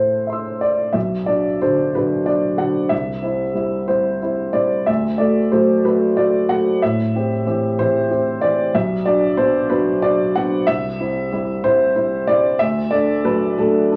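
Melancholic and intimate, this short cut from a longer neoclassical minimalist piano piece drifts at a rubato 62 BPM in 6/8, where a solo upright piano, dark, woody and vintage, sits up front through cassette tape and tape echo amid moderate booth ambience, spanning B1 to E6 as it moves through Am, Bm, C and D before returning with Am7.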